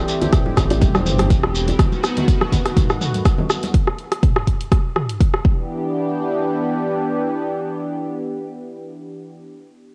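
A small-room home recording on cassette carries this driving, spiritual afro house excerpt at 123 BPM in E minor, where a deep, up-front electronic kick and a dark-hatted deep house kit with rim click and toms lead a drop over Am7 and B7, while ringing background congas, a tight, cracking djembe and a grainy, band-limited shekere add acoustic colour, a smooth sawtooth synth bass pumps briefly until 1.7 seconds, and a bright, detuned, chorused analog pad with a moving notch sustains Em7 alone from 5.6 seconds onward.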